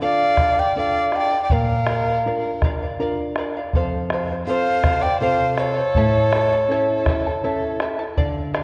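Andean folk in a straight 3/4, this short excerpt from a longer piece feels melancholic yet festive as a breathy, woody quena with audible chiff carries the melody over a rich, nasal violin second line, both falling away at 7.8 seconds. Shimmering fingerpicked charango and small, thumb-plucked nylon-string guitar supply accompaniment through a Dm, Bb, F and A progression, while a round, up-front bombo enters at 0.4 seconds. The ensemble sits in a lush scoring-stage reverb, colored by worn cassette tape with warbly pitch drift.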